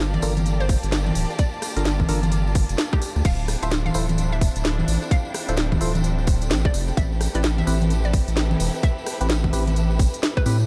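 A light reverb and a tape-warmed punch give this short cut from a longer two-step UK garage track a soulful, bouncy glow, with a swung 16th-note feel. Up front, a tight electronic kick and a deep, thick saturated sub bass anchor the groove, joined by a layered garage kit of cracking snare, crisp hats, rim clicks, congas and crash cymbal. A jingly acoustic tambourine adds sparkle, while a close, expressive violin section holds sustained, vibrato-rich chords that pump with the sidechain. Behind them, a lush, intense string section shimmers as texture. Also in the background, a detuned square-wave pluck carries the melody through chorus and tape echo, and a mellow, wave-folded organ stab adds hollow hits with phaser and echo. The harmony moves from Gm9 to Dm9 at 3.3 seconds and Am9 at 7.0 seconds.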